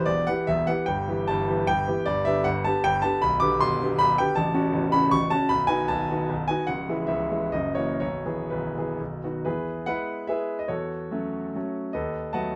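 A light reverb surrounds a bright grand piano that sits up front in the sound, its tone brilliant and natural. This is a classical, romantic dance in 3/4, a triple-time piece built on dotted rhythms, with a proud, rustic character. The solo piano moves freely with rubato, the tempo ranging from 115 to 170 BPM, and spans from A0 up to D6. The harmony opens on E minor and G before settling into E major from 4.4 s, passing through F#m/A, B7, C#m and F#7 on its way to a cadence on E/B and B. A new phrase begins at 9.5 s on E, moving through F#m7/E to B7/D#, where this excerpt from a longer piece breaks off at 12.6 s.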